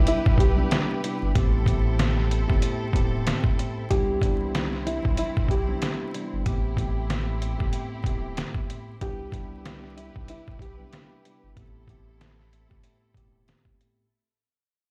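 A swung boom-bap groove at 94 BPM rides on an up-front, compressed, pitched-down, muffled sampler-style kit with a thumpy kick, medium-tuned snare and hi-hat, over a deep, thick, saturated sub bass, in a soulful, warm cut from a longer hip hop piece that fades out across its whole length. A mellow, clean tine electric piano with a cassette-tape colour holds down the Cmaj7 to Am7 changes, while a thumb-plucked classical nylon-string guitar carries the melody with audible finger squeak and delay until 11.1 seconds. Lush, bowed studio strings add smooth, vibrato-rich stabs with delay, all set in a large, reverberant room with vinyl crackle.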